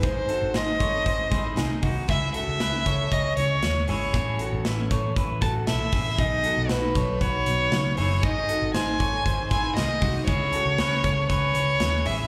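This short excerpt sounds like a live gig heard through the venue's PA, wrapped in club reverb. It is jangly indie pop in a straight 4/4, bright and youthful in mood, with the chords moving through G#, C#m, A and B before returning to G# and C#m. Up front, a single dark, woody violin carries the bowed melody with vibrato, trailed by digital delay. Beneath it, a picked steel-string acoustic guitar with an auditorium tone provides accompaniment through slapback echo. An electric guitar through a small old amp plays lo-fi, slightly broken-up, compressed arpeggios soaked in spring reverb, slapback echo and digital delay. A vintage foam-muted electric bass gives a round, amped low end, while a big rock drum kit fills a big room with a punchy kick, a medium-tuned snare and hi-hat.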